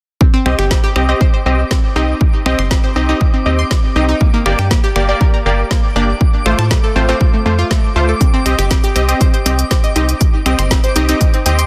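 A punchy, tape-warm kick and a round, chorused analog pluck arpeggio open this expansive, dreamy progressive house excerpt at 120 BPM in C dorian at 0.2 s, soon joined by a dark, saturated sequencer bass, detuned supersaw stabs through tape, filter and delay, a deep house kit of woody snare, smooth hats and finger snaps, and a faint twinkling granular shimmer in the background, all moving through Cm, Gm, F/A and back to Cm, with sidechain pumping on the pluck, bass, stabs and shimmer under a dense, heavily limited master.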